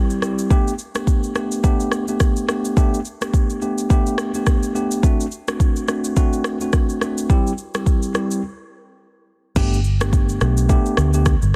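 A swung sixteenth-note groove in four sets the bounce of this short afrobeats excerpt, sunny and joyful in mood. An electronic, produced afro-pop drum kit carries it with a deep kick, rim click, shaker and crash cymbal, colored by vintage 12-bit sampler grit and soft clipping on the snare. Alongside, a mellow tine electric piano plays accompaniment in a middle register, its tone clean and heard as if through built-in speakers, moving from C to Gadd9, then D7 and back to C. A break arrives at 8.4 seconds, and at 9.6 seconds a vintage muted fingered electric bass enters low and up front, dark, round and amped with a foam-muted thud as the harmony returns to Gadd9. The sound is dry and close, with a dense, heavily limited modern master.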